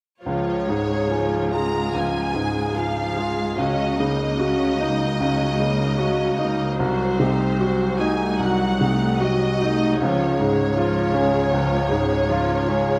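A rich viola section opens the passage at 0.2 s, bowed with smooth, even vibrato in the background of this lyrical, lush romantic movement for piano and orchestra. From 0.3 s a clear, open baby grand piano carries the melody up front, its long sustain ringing through a moderate scoring-stage reverb. Alongside it, a warm violin section sings the melody higher up, its bowed tone smooth and even with vibrato, while a focused, close cello section holds the bass beneath. The pulse stretches and gives with rubato, and the harmony moves from its home chord through a minor seventh and a darkening diminished chord before settling home again at 10.0 s. Cut from a longer piece, the passage plays through to 13.0 s as one unbroken, song-like statement.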